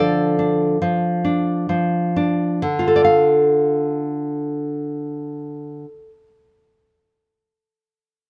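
A dark, lightly reverberant production frames this short cut from a longer romantic piece for solo classical guitar in D minor, played rubato at 68 BPM in 4/4. The fingerpicked nylon-string guitar sits up front with a full-bodied, deep classical tone, ranging from D3 to F5 over a D minor chord, and it slows down through the first 2.6 seconds before moving into a new passage that runs to about 6.2 seconds. The mood is wistful yet passionate.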